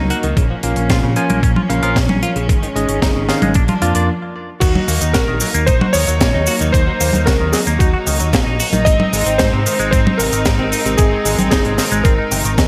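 Danceable and nostalgic, this italo disco excerpt in Eb dorian moves at 113 BPM in a straight 4/4, with a clear studio string section holding biting sustained chords, a bright, twangy clean electric guitar arpeggiating through phaser and delay, a dark, round overdriven fingered bass, bell-like tine electric piano stabs with delay until a brief stop at 4.1 seconds, a tight funk kit with a high-tuned snare, cabasa and toms in gated reverb, and a thumpy overdriven electronic kick, before a vintage electric grand piano with a clangy low end takes the melody through tape echo from 4.6 seconds.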